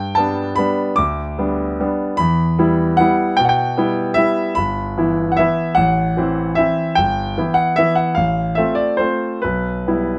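A rubato waltz in three sways through this wistful, nostalgic classical fragment, where a solo concert grand with a brilliant, polished tone, deep bass and short sustain sits up front in close, detailed sound with light reverb and a faint mains hum, moving through minor-key harmonies that touch a brief F/A before settling on Em/B near 9.4 seconds.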